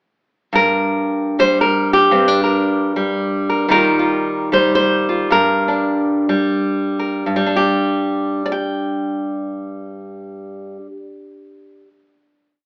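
The recording has an AM radio sound, set in a moderately large studio reverb that gives the feel of a live room. It is a complete short piece of solo fingerstyle folk in G minor, melancholic and reflective, moving in 3/4 at 81 to 115 BPM with a swung eighth-note feel. A single nylon-string guitar, sitting up front, carries everything from G2 to G5, its fresh strings giving a warm, classical tone with audible finger squeak. The fingerpicked line is built from short motif-based call phrases with a syncopated lilt, moving from G minor to E-flat add9 and back. The tempo slows from 3.7 seconds, and at 7.3 seconds the guitar settles onto a sustained G5 chord that closes the piece.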